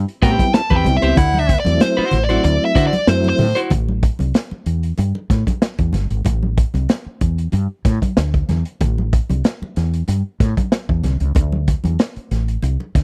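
Dry and close, this funk excerpt at 94 BPM in A dorian sits in a small room with a 1970s studio feel, hypnotic and funky, anchored by a woody, round fretless bass and a crunchy, gritty breakbeat kit with a tight kick, while soft-handed, thick-skinned congas murmur in the background. For the first 3.7 seconds a nasal, overdriven lead guitar with a parked wah takes a short solo over a barely broken-up rhythm guitar and mellow, flute-like tonewheel organ stabs with chorus vibrato and key click, and a bright, forceful baritone saxophone punches a single E4 at 1.2 seconds during a band accent. Then the guitars and organ drop away, leaving bass, drums and congas to ride the groove through the Am7 section to a closing D5 at 11.4 seconds.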